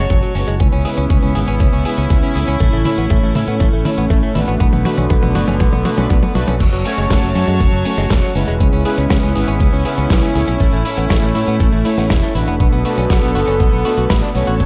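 Danceable and romantic, this italo disco excerpt moves at 120 BPM in a straight 4/4, cycling through F#m, C#m7, A and Bm7 over a fingered electric bass, with a thumpy, overdriven electronic kick and a gritty, dusty soul sampler-style kit of cabasa, hi-hat, medium-tuned snare, toms and crash cymbal both entering at 0.1 seconds. A rich chamber string section with a reedy gut-string tone holds sustained chords, while fat, detuned analog synth brass with chorus punches out stabs and a clean, direct-recorded electric guitar picks arpeggios through a low-pass filter and analog delay. A drum fill and a filter sweep on an analog polysynth run through the opening 6.6 seconds before the second section, all set in digital ambience with a dry, gritty hardware sound.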